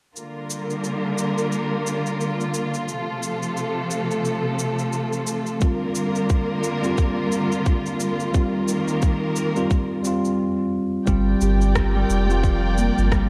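Hypnotic and mystical, this organic downtempo passage in G minor moves at 88 BPM with a swung 16th-note feel. It opens at 0.2 seconds with an expressive bowed string section holding sustained chords with vibrato and portamento, alongside tape-touched electronic cabasa and rim click re-recorded in a large room. At 5.6 seconds a bright, bell-like electric piano with digital delay and a tight, up-front electronic kick join, and from 11.1 seconds a ringing fingerpicked Celtic harp with delay and a deep, round sine sub bass arrive. The strings, electric piano and sub bass breathe with sidechain pumping inside a dark, warm mix and concert hall reverb.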